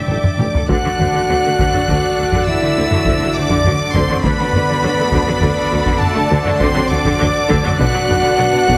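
Epic orchestral film score in 12/8 at 68 BPM, heroic and grand, opening with a taiko drum fill struck with hard sticks as a close, expressive studio violin section carries the lush, vibrato-rich melody high above an airy, distant concert flute and a focused symphonic violin section on second lines. Smooth violas, mellow French horns with soft attacks, and a clear woodwind section entering at 0.7 s fill out the sustained harmony moving from A7 to D and then Bm at 7.8 s. Underneath, intense cellos, a soft-attacked double bass section and a very quiet tuba anchor the bass, all set in a wet concert hall reverb with a heavily compressed, radio-like finish.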